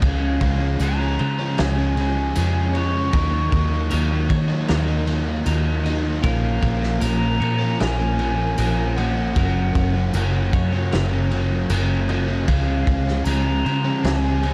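Shoegaze and dream pop rock at 77 BPM in straight 4/4, this brooding, dreamy excerpt moves through Dbmaj7, Ebm7, Bbm and Gb6 before returning to Dbmaj7. A distant, hollow silver concert flute carries the melody with a pure tone, vibrato and a crisp attack, trailed by digital delay. In the background, a twangy twelve-string electric guitar plays arpeggios bathed in lush chorus and delay. Beneath them, an overdriven electric guitar plays a compressed, bright riff with reverse reverb, sharing its register with a fuzz guitar whose distorted tone carries analog chorus. A round, foam-muted fingered electric bass sits up front with a punchy, amped sound, and a loose indie drum kit of kick, snare and crash cymbal brings dark cymbals, a gritty, saturated character and a rolled-off top. A jingly tambourine, close and dry in the background, plays from 0.8 to 13.4 seconds, and the whole is set in studio reverb with a dark, warm production.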